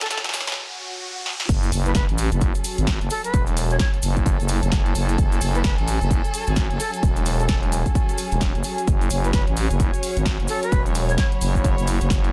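A swung 130 BPM bass house groove in F# minor opens with a short build of drum fills, high-passed hats and crash, bright cabasa and an electronic riser and swell over a warbling, lo-fi pad and rich bowed chamber strings, while a breathy, chiffy jazz flute sketches a melody on top. At 1.5 seconds the drop lands with a sub impact, a punchy, up-front electronic kick and a thick, growling FM bass with tube saturation, the strings and pad pumping to the sidechain beneath the flute's digital delay. The gritty, swaggering excerpt moves from F#sus2 to F#madd9 in a dense, heavily limited modern master.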